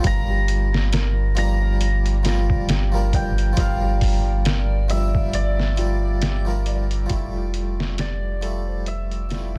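A slow 68 BPM trip hop groove with a swung 16th feel rides on a muffled, pitched-down sampler kit with a thumpy kick and a round, deep dub sub bass up front, beneath tremolo-washed harpsichord chords, a felt-muted upright piano's arpeggios carrying 12-bit sampler grit and tape echo, and a shimmering hammered cimbalom melody, while a reversed granular texture creeps in faintly at 2.0 seconds, moving from Gm7 to Fmaj9 in G dorian in a melancholic, cinematic fragment of a longer piece that fades out from 4.7 seconds under a dense, heavily limited modern master.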